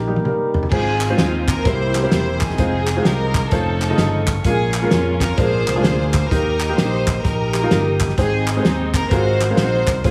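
Uplifting and hopeful, this uptempo gospel excerpt swings at 129 BPM in Ab major, opening with a drum fill on a warm soul kit with a fat snare, punchy kick and dark cymbals before lush, woody bowed strings take the melody up front at 0.7 seconds. Fingered electric bass, a clear concert grand piano with a worn tone and short sustain, and a tonewheel organ holding clean sustained chords through a stopped rotary speaker in the background carry a progression moving from Ab6 through Fm7, Bbm7 and Bb7 to Abmaj7 and Ab13. Hollow, dry group handclaps join at 1.0 seconds, all set in a light small room ambience.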